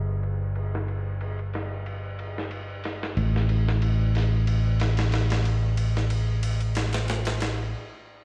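The recording sounds as though it is played on a big sound system in a bare room, with a stone room reverb and a low-pass filter shading the whole mix, and a filter sweep runs across the entire passage. This is a short, brooding and dark trip hop cut taken from a longer piece, set in 4/4 with a light swing on the sixteenths. A fingered electric bass sits up front from the very start, amped and growly, hovering between G1 and A1. A boom bap sampler-style drum kit enters at 0.2 seconds with ride cymbal and a medium-tuned snare, sounding compressed, pitched down, gritty and tape-warm, with high-pass filtering thinning both the cymbals and the snare. The drums sit lower in the mix than the bass, and the music comes to a stop at 7.7 seconds.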